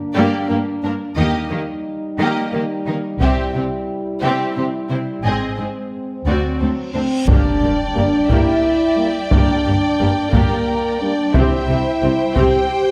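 Set in a moderate scoring-stage reverb, this heroic, dramatic cinematic excerpt in 6/8 at 59 BPM opens on mellow, up-front French horn chords over lush bowed strings: an expressive, close violin melody, a smooth, distant second violin line, viola accompaniment with portamento, rich cellos, and, from 1.2 s, dark, woody double basses in the background. Hard-stick taiko drums enter at 3.2 s. A huge, bright reverse cymbal swells from 6.9 s into an impact at 7.3 s as the music moves into G dorian, and a background trombone section adds sustained chords from 7.9 s.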